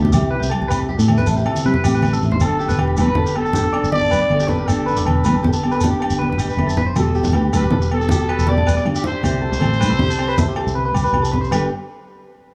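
This joyful, carefree highlife guitar band clip, cut from a longer piece, moves in 12/8 with a straight feel. A dark, full-bodied nylon-string guitar, thumb-plucked in a deep classical manner, carries the accompaniment, while a twangy, compressed clean electric guitar picks high arpeggios colored by phaser and slapback echo. Underneath, a round, foam-muted fingered electric bass sits prominently in the mix. Bright, low-tuned congas struck with hard hands and ringing agogo bells sit in the background, while a grainy, distant shekere rounds out the percussion. At 2.4 s a raspy, growling trumpet enters with a jazz-style solo full of vibrato and scooped notes, sounding roomy and set back, as the chords move from C through Gadd9 and Emadd9. A short drum fill arrives at 10.8 s before the harmony returns to Gadd9 at 11.5 s, all within light reverb.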